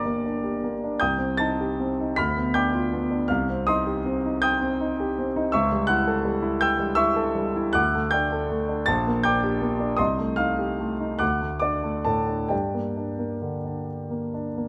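Romantic classical character piece for solo piano in G minor, a bittersweet, passionate fragment of a longer work, moving in a rubato 6/8 at roughly 43-56 BPM by the dotted quarter and tuned to A4 = 444 Hz. The concert grand sits up front with a natural, warm tone and deep bass, ranging from G1 to B6 as its harmony passes through C minor, a diminished chord, A7 over C# and D before settling back on G minor at 12.5 seconds. Close, detailed microphones capture the piano within a moderate recital-hall reverb of about 1.5 seconds, and the fragment lasts 14.7 seconds.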